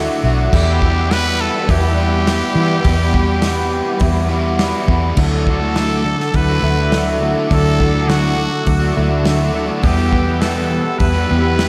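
Hazy and dreamy, this short cut from a longer shoegaze and dream pop rock piece moves at 103 BPM in D major, its straight 4/4 drifting through a lush hall reverb that soaks the whole mix. A deep, detuned analog pad holds sustained chords with a slow attack and chorus, while a fingerpicked twelve-string acoustic guitar shimmers in the background with octave-doubled arpeggios through lush chorus and delay. A mellow electric guitar plays a dark, clean riff behind reverse reverb, and a raw garage guitar adds an overdriven, picked riff with analog chorus, all anchored by a round, foam-muted vintage electric bass. At 0.5 seconds a loose indie drum kit enters with a tight kick, medium-tuned snare, hi-hat and crash, along with a growling trumpet that carries the solo melody, raspy and punchy, with light vibrato and delay. The harmony sways between Dadd9 and Emadd9, and a second section begins at 5.2 seconds.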